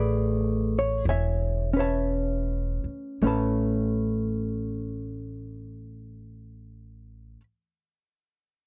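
A slow 4/4 swing at 51 to 64 BPM, easing back over the first 3.2 seconds, sets this short jazz ballad fragment in A major, with a late-night, romantic mood. A dark, clean hollow-body electric guitar, fingered and compressed, carries the accompaniment up front over Amaj9 moving to Aadd9, while a woody pizzicato upright bass with steel strings sits low and close beside it until about 7.3 seconds. The sound is dry and intimate, in the manner of a 1970s studio.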